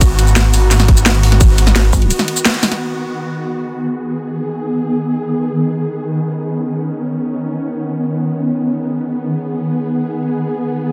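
A swirling, thick detuned saw bass run through a phaser and tube saturation opens this tense, aggressive dark technical drum and bass excerpt in G# minor, alongside a tight, overdriven electronic kick and an up-front kit of cracking snare, bright hi-hats, ride and shaker. At 1.9 seconds a heavy, chorused pluck wobble bass pulses in briefly, and the kit falls away at 2.8 seconds, leaving the granular, swarming drone of sustained chords, pumping under sidechain with its own reverb as a filter sweeps across it until 10.9 seconds. The free-time passage sits in light reverb under a dense, heavily limited modern master.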